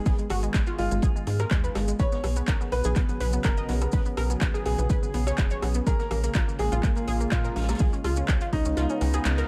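Bittersweet and expansive, this snippet of progressive house at 124 BPM moves through G#m, Bsus2, A#m7 and C#7 as a lush, thick unison pad carries a filter sweep throughout and a round, detuned analog pluck spins chorused arpeggios with dub echo, both pumping against the sidechain. A tight, saturated sequencer bass drives underneath, up front beside an overdriven electronic kick with a deep, roomy weight, while a deep house kit adds metallic hats, handclaps and rim clicks, a very quiet soul kit contributes a fat snare, and grainy maracas sit in the background. A bright, worn grand piano enters at 0.8 seconds with echoing melody, the kick drops out at 8.8 seconds, and the band hits an accent at 9.3 seconds.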